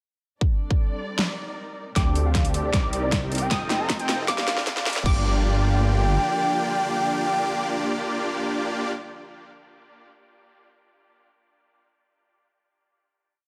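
A dark, bowed string section with sidechain pumping opens this lush, bittersweet future bass piece from the background, beneath a punchy electronic kick. A dubstep kit soon adds a huge snare, metallic hats, hat rolls and crash in a half-time beat. At 2.0 seconds a velvety sawtooth lead with chorus, vibrato, portamento and tape echo carries a repeating riff melody, while bright supersaw chords make syncopated pushes through a low-pass filter sweep and dub echo, a wave-folded unison pluck doubles them an octave higher, and a thick, saturated detuned saw bass follows the chord rhythm. The build gives way at 5.1 seconds to a final chord, with light reverb and digital ambience around the sound.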